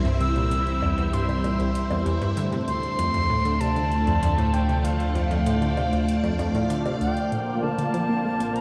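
Luminous and expansive, this excerpt of sequencer-driven ambient space music sets a lush, up-front string machine ensemble, colored by phaser and ensemble chorus, over a deep, nasal analog bass, while a detuned sawtooth pluck riff with chorus and delay, a reedy concert flute melody with vibrato and delay, a breathy wind-like noise texture and distant metallic electronic hi-hat and woodblock all drift through a vast cathedral reverb with a cassette-tape character, until a filter sweep on the synth arpeggio at 7.3 s marks the shift to a Bbsus2 chord.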